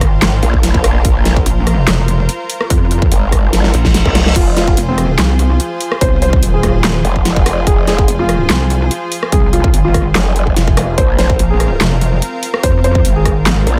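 A lush, detuned sawtooth pad pumping over a Bbsus2 chord opens this aggressive, chaotic heavy wobble dubstep excerpt at 145 BPM in a swung half-time feel, alongside a pulsing, heavy pluck wobble bass, an overdriven dubstep drum kit with a huge snare, bright hats, handclaps, rim clicks and crashes, and a punchy, tape-warm electronic kick, before a growling, saturated growl bass joins at 0.4 seconds, a drum fill arrives at 3.5 seconds and a background reverse cymbal and zap at 3.7 seconds, and a soft, mellow felt-muted upright piano enters with dub echo at 4.4 seconds as the harmony turns to F minor, all in a dry, up-front mix.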